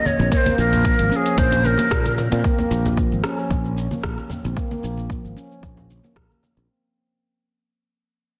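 A breathy, up-front ney with vibrato leads this meditative, hypnotic organic downtempo excerpt with a delayed melody heard only until 2.2 s, over swung, overdriven deep house drums with metallic hats, cabasa and rim click, a deep overdriven electronic kick, soft-handed congas in the background, a ringing, close-miked handpan playing low-pass-filtered, delayed arpeggios, and a growly, sidechain-pumped fretless bass, set in an echo-chamber reverb as the music fades out and the handpan takes a filter sweep from 2.4 s.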